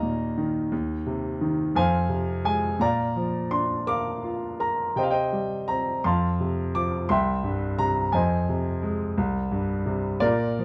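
A dark production sets a clear grand piano up front in a moderate studio reverb, its tone smooth and vintage with a short sustain. This is a lyrical classical passage for solo piano, wistful and melancholic, moving at a slow 57 BPM counted in dotted quarters within 6/8 and shaped with rubato. The single instrument spans a broad range from C2 to D6. The harmony drifts from Ebsus2 through Cm/Eb, Fm and Bb, then turns toward Cm at 5.0 seconds before passing through F, C and Fm7 to settle on a bare C5 at 9.2 seconds. Lasting about 10.6 seconds, the fragment is taken from a longer piece and leaves its reflective mood unresolved.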